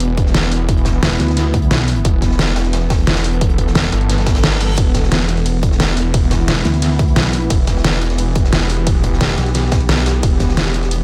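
A snarling, growling distorted saw bass and a swarming, warbling drone with reverb and sidechain pumping open this dark, aggressive drum and bass excerpt, driven by a punchy electronic kick, an up-front dubstep kit with a deep snare, and a gritty breakbeat kit in the background, while a pulsing, chorused wobble bass surges in at 1.0 and 6.5 seconds and a reverse cymbal rises at 4.2 seconds.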